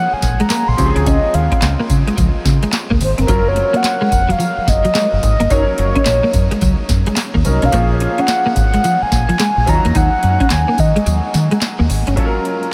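A dreamy, reverb-soaked mix carries this punchy, slick new jack swing excerpt in Eb dorian at 108 BPM with a swung 16th feel, where a mellow horn-like sawtooth synth lead with chorus, vibrato and analog delay sings the melody over clear, polished grand piano chords, a clean compressed electric guitar riff, a deep, round, foam-muted dub fingered bass and a booming, tape-warm analog drum machine with a deep kick, crisp snare, metallic hats, handclaps and tambourine, moving from Bbm7 through Dbmaj7 and Gbmaj7 before a brief break at 11.1 seconds.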